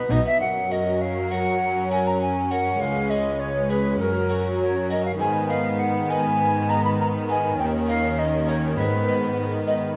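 A silver concert flute with an airy, straight tone and crisp attack leads this festive, lively baroque-style concerto movement, carried over a brilliant plucked harpsichord, a lush viola section, an up-front cello section on the bass, a rich chamber violin section on the melody in the background and a clear, smooth violin section on a second line, all bathed in recital-hall reverb and the warbling pitch drift of worn cassette tape in a passage cut from a longer piece.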